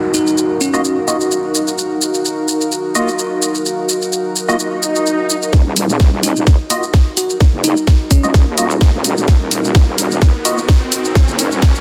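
Bass house at 128 BPM in Eb minor, this swaggering, aggressive excerpt from a longer piece rides a lightly swung 16th-note feel over an opening Ebmadd9 chord. A deep, moody ambient pad sits in the background with sustained chords, its built-in reverb and chorus adding depth, while an airy, breathy pad adds a soft texture, both pumping with sidechain. A garage drum kit of hi-hat, shaker and cracking, soft-clipped snare runs throughout, joined by hollow, organ-like stabs carrying chorus and delay, plus a bell-like, sparkling FM electric piano melody with phaser and delay that appears briefly at the start and again around 6.2 seconds. Sound effects (a downlifter, swell and riser) thread through the whole passage, with a swell leading into a build-up and drum fill at 5.5 seconds. There a tight, up-front electronic kick enters alongside a heavy, saturated wobble bass, detuned and resonant, that drives the low end. 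The mix sits in a lush hall reverb and is dense and heavily limited in a modern master.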